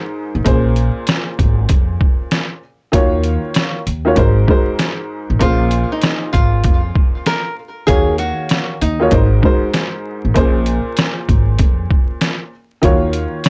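This is a reflective, gritty boom-bap hip-hop fragment, cut from a longer piece, that rides a swung sixteenth-note feel over a looping Bbm7, Ebm7 and Ab7 progression. A dark upright piano opens the track at 0.0 seconds and sits up front. It sounds worn, mellow, intimate and slightly detuned, with a boxy, short-sustained tone, audible action noise and a filtered, cassette-tape character. Beneath it, a pizzicato upright bass gives a woody, steel-string pulse, while a sampler-style drum kit brings a compressed, pitched-down, muffled sound with a thumpy kick, a medium-tuned snare and hi-hat, placed prominently in the mix. From 5.4 to 9.7 seconds, a small, bright fingerpicked nylon-string guitar carries a short melody, filtered and trailed by tape echo. The whole recording is dry, with gritty hardware character and a layer of vinyl crackle.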